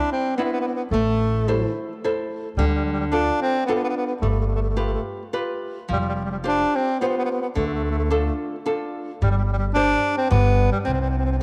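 Bathed in a moderate plate reverb, this sunny, romantic Italian folk serenade in a gently swung 3/4 places a warm, classical-style tenor saxophone solo up front over small, fingerpicked nylon-string guitar with audible finger squeaks, joined at 0.9 s by a woody, dark pizzicato upright bass with a growly, thumpy tone, as the harmony moves from Cadd9 through Am, Dm and G7 to suspended chords and a closing G before the music breaks off.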